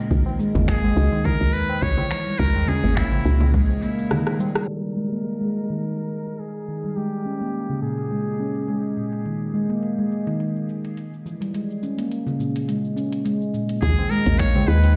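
Organic downtempo in Eb phrygian dominant at 105 BPM with a light 16th-note swing, hypnotic and earthy, as an up-front handpan rings out soft, airy arpeggios throughout while a round, woody FM bass pumps beneath it and a punchy, overdriven electronic kick sits back in the mix, the kick dropping out at 3.7 seconds and the bass at 3.8, both returning at 13.8 seconds. A deep house kit of metallic hats, cabasa, congas, finger snaps and rim click keeps time alongside low-tuned, ringing tabla, and a buzzy, thin metal-muted trumpet solos in jazz style with light vibrato, its delayed lines running to 8.9 seconds before coming back for the closing bars. After a drum fill and band accent near 4.5 seconds, a long filter sweep shapes the handpan through the middle stretch, the whole heard as if played on a big sound system in a bare room with a large studio reverb.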